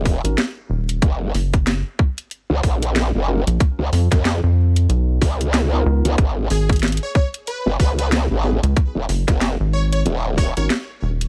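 A growling, wobbling bass with formant-filtered, saturated bite sits up front beside a rubbery, hollow square-wave bass in this playful, swaggering glitch hop excerpt at 93 BPM, driven by a tight, overdriven electronic kick and a layered kit of cracking snare and bright hats with a swung 16th-note feel. A mellow tine electric piano plays stabs in the background with sidechain pumping and digital delay, moving from F# through C#13 to D#m over a bed of vinyl crackle in a dry sound. At 6.5 seconds a punchy, catchy unison lead enters, detuned and bright with phaser, lush chorus and delay.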